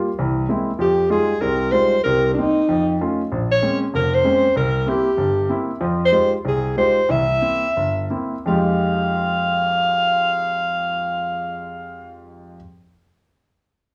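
Moody, swinging jazz in F minor, cut from a longer piece, with an up-front alto saxophone carrying the melody from 0.8 s in a clear subtone jazz style with a soft attack. A clear, intimate grand piano accompanies throughout, its polished sound carrying audible action noise, and the pace slows between 5.8 and 8.5 seconds. Both instruments share cassette tape colouring and plate reverb, set in a small booth-like home room captured on cassette.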